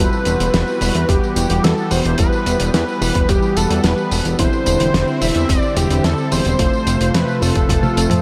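Driving and moody, this short synthwave excerpt moves at 109 BPM in a straight 4/4, set in E minor and cut from a longer piece. A thick, bold unison lead carries the melody up front, its bright, detuned sawtooth tone colored by vibrato, subtle chorus and analog delay. Beneath it, a shimmering, retro pulse-width pad holds sustained chords in the background with sidechain pumping, while a lush, warbling FM electric piano layered with a soft pad adds mellow stabs. A fat, detuned sawtooth bass sits up front with a filter sweep, joined by a muffled, gritty, lo-fi drum kit of hi-hat, fat snare, tambourine and toms, and a punchy, layered electronic kick that enters at 1.1 seconds. The harmony moves from Emadd9 to Cadd9/E and then F, a drum fill closes the passage at 7.7 seconds, and a huge ambient reverb soaks the whole mix in a dreamy haze.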